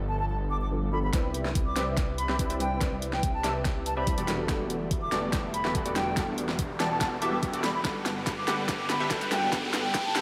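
This is a euphoric, bright future bass excerpt in a half-time feel, cut from a longer piece and bathed in a dreamy hall reverb. A soft, round pluck with lush chorus and tape echo sits in the background alongside a very quiet, breathy pad with a warbling vintage character, while a thick detuned saw bass holds the low end, the pluck and bass both pumping under sidechain. A bright wooden flute carries the melody with a crisp attack and expressive straight tone, and from 1.1 seconds a punchy supersaw stab riff enters through a filter sweep over chords moving from Cmaj7 through Em11 to Gmaj7. At the same point an overdriven, knocking electronic kick and a pop kit with a fat snare and hi-hats arrive, re-recorded in a small room, as the passage turns into a build-up with a drum fill. An electronic riser joins in the background at 4.8 seconds, lifting the energy toward the end.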